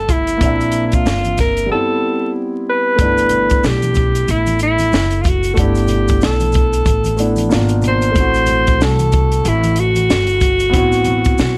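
A breathy alto saxophone, a dark baby grand piano and an upright bass open this smoky, cool jazz-hop excerpt together, with a compact cocktail drum kit and congas and maracas joining almost at once. The saxophone carries the melody up front in a vintage jazz style, its subtone voice marked by scooped notes. Beneath it, the piano sounds mellow and boxy, with long sustain and audible action noise, while the pizzicato bass is woody, with steel strings. The dry kit pairs a punchy kick and a high-tuned snare with hi-hat in a swung hip hop groove, falling silent from 1.7 to 3.0 seconds before returning. The ringing congas and maracas, played with soft hands, sit in the background in a small room. Light reverb and a layer of vinyl crackle frame the sound, and the piano adds a brief fill at 11.4 seconds.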